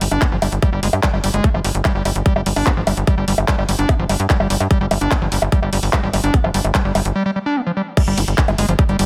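Psychedelic trance at 147 BPM in G phrygian, this short cut from a longer piece has a psychedelic, driving mood over a straight 4/4 pulse, tuned slightly low to A4 = 437 Hz. A tight sequencer bass sits up front in the low register, its nasal, evolving sawtooth and square-wave tone shaped by a fast-attack filter pluck that decays. Above it, an overdriven acid bass plays a riff between F3 and G4, squelchy and gritty with a resonant, saturated edge, treated with sidechain pumping and delay. A punchy, layered electronic kick drum enters at 0.2 seconds and sits loudest in the mix, joined by a big-room dance kit of bongos, handclaps, hi-hat and crash cymbal. The harmony rests on a G5 power chord until a break at 7.2 seconds gives way to a drop at 8.0 seconds, where the chord falls away, all within a light reverb and digital ambience.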